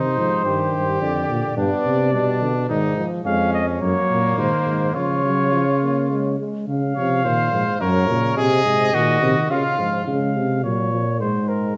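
A lively, elegant classical canzona for brass ensemble opens with two trumpets and tuba sounding together, a trombone joining almost at once, all moving at 106 BPM in a straight 3/4. The harmony settles into Db major from 3.3 s. The dark-toned trumpet carries the melody up front with light vibrato and a soft attack, while the bright trumpet weaves an imitative second line, also up front and with vibrato. Beneath them, the clear tuba sits prominently in the bass, and the dark-toned trombone fills in an accompaniment with vibrato and a smooth top. After a contrasting middle passage, the second trumpet drops out at 10.1 s as the opening material returns, and the fragment, cut from a longer piece, breaks off in the reverberant glow of a recital hall.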